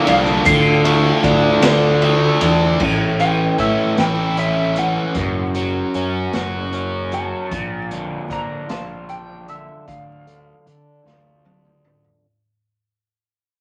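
Psychedelic rock in a slow 6/8 at 51 BPM, hypnotic and hazy, cut from a longer piece, with a biting, double-tracked overdriven guitar riff up front over round fuzz bass, a gritty, pumping garage drum kit, and a mellow, flute-like tonewheel organ on slow rotary speaker drifting in the background until 7.5 s. A twangy, slightly broken-up lead guitar with wah carries the melody and moves into a solo at 2.8 s as the chords shift from Dm through A, F# and Bb, while a filter sweep and fade-out run beneath it and a drum fill from 11.1 s closes the excerpt. Very quiet, grainy maracas appear briefly at the start, and the whole mix sits in a wet reverb with vinyl crackle.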